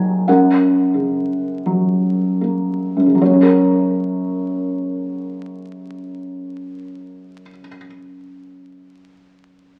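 Calm and warm, this brief classical fragment from a longer piece features a lone felt-muted upright piano, soft, mellow and intimate with audible action noise, playing lyrically in a free rubato that slows through the first 3.2 seconds before a new section begins, set up front in a reverberant recital hall and heard through the crackle of a very old 78 rpm record.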